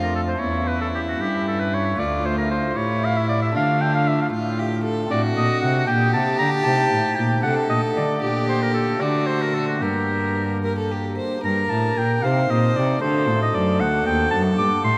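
Set in a steady, even-pulsed six-eight metre, this solemn, introspective baroque-style sonata movement with continuo moves at a measured pace and is heard as a fragment cut from a longer work. An up-front solo oboe carries the melody with a warm, vibrato-laden tone and a smooth top, played in a classical style. Also up front, a single bowed violin plays a rich second line with light vibrato and a period-style gut-string sound that carries a slightly reedy edge. A stopped-flute pipe organ fills in the accompaniment with soft, hollow, mellow flute stops, baroque voicing and a touch of chiff. Underneath, a solo cello gives a rich, bowed gut-string bass line with light vibrato, also in period style, before dropping out at 14.9 s. The harmony turns toward a new key center at 5.1 s and the opening section gives way to a contrasting one at 11.4 s, all bathed in a long cathedral reverb that places the ensemble in a vast, echoing space.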